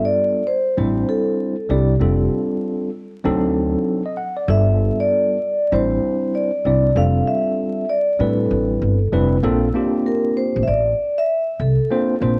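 A mellow, nocturnal jazz-hop excerpt opens with a soft-mallet vibraphone melody, metallic and ringing with slow motor vibrato, over a clean tine electric piano heard through its built-in speakers, moving through lush chords such as G9, Am7 and F69 at a swung 97 BPM in 4/4. At 0.8 seconds a woody, growly pizzicato upright bass with steel strings and tube saturation joins up front, and at 9.4 seconds the harmony shifts to a Bbmaj9. The whole mix sits in a moderate echo-chamber reverb with small-room ambience, coloured by worn cassette tape, warbly pitch drift and vinyl crackle.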